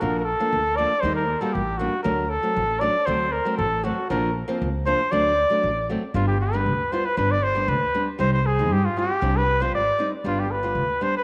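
Klezmer in 2/4 at 117 BPM, festive yet bittersweet, this short passage cut from a longer piece moves from D phrygian dominant to G phrygian dominant at 6.1 s. A clear, up-front flugelhorn carries the solo melody with vibrato and a pop-style delivery, over a small, dark fingerpicked nylon-string guitar and a woody, growly pizzicato upright bass with a thumpy steel-string attack. A moderate echo-chamber reverb gives the trio a roomy sheen as the harmony moves through Bb, Eb, D, Bb and D, then to G and Cm before returning to G.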